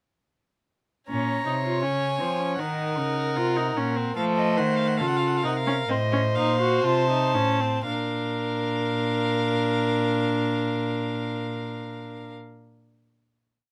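Solemn yet driving, this short baroque-style fugue for string quartet moves in 4/4 at 56 to 82 BPM, slowing from 1.1 to 10.0 seconds. All four players bow in period style on gut strings with a reedy edge, each carrying one line of imitative counterpoint from 1.1 to 12.3 seconds. The first violin leads with a rich melody touched by light vibrato, while the second violin sounds nasal and set back. Beneath them the viola adds a warm inner part, and the dark cello sits up front with a smooth top. The exposition passes from B-flat minor to F7, and at 7.9 seconds the piece settles onto a closing B-flat major chord. The close, detailed recording carries little reverb.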